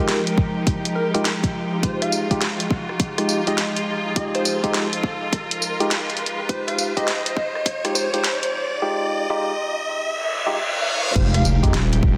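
A heavy, saturated wobble bass bursts in at 11.2 s to mark the drop of this gritty, swaggering glitch hop excerpt, after a build-up where a punchy, detuned unison lead with delay carries a catchy melody over clear, bowed symphonic strings and grainy 12-bit tine electric piano stabs that both pump with the sidechain, backed by a punchy up-front electronic kick, a fat-snared pop kit, and a riser, reverse cymbal and sub drop, all set in a lush hall reverb.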